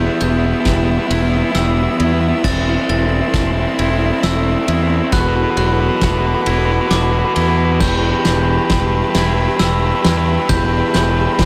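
Post-rock in a brooding, cathartic 6/8 build-up, cut from a longer piece: a crunchy overdriven guitar riff and a growling, overdriven fingered bass sit up front, while a twangy clean electric guitar and a sparkling glockenspiel struck with brass mallets play slapback-echoed arpeggios in the background over lush, bowed symphonic strings holding sustained chords, and a loose indie drum kit with a fat snare, tight kick and dark cymbals enters at 0.2 s and drives a fill through the whole build in a lightly reverberant studio space.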